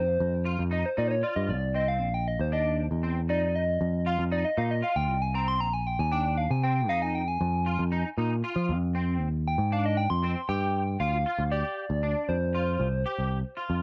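A gentle, keys-like FM synth lead opens this progressive instrumental at 0.0 seconds alongside a round, up-front picked electric bass, and the synth carries a solo melody through to 10.5 seconds. The lead has a vintage, warbling character from chorus, vibrato, cassette tape coloring and tape echo, with a fast attack that then decays. From 0.5 seconds a clean, bright semi-hollow electric guitar adds picked arpeggios in a lower register, colored by an ensemble chorus and sitting further back than the other two parts. The music moves in a straight 7/8 with an intricate, driving feel, passing through Cm9, Ebmaj7sus2 and Fm7 before shifting at 10.5 seconds to a new section built on G5 and F5. The whole home cassette recording carries a light reverb and is cut from a longer piece.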